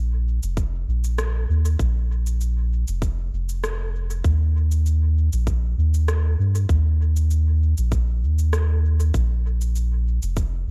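A dry, echo-heavy mix frames this short cut from a longer ambient dub piece, hazy and deep at 98 BPM in 4/4 with a light swing on the sixteenths. A round, soft sub bass built from triangle and square waves sits up front from the start, sustained and thickened with tube saturation, while electronic cabasa and rim click arrive at 0.4 seconds, low in the balance and carrying dub echo. A tight electronic kick follows at 0.6 seconds, tape-warm and up front, and like the percussion it was re-recorded in a large room.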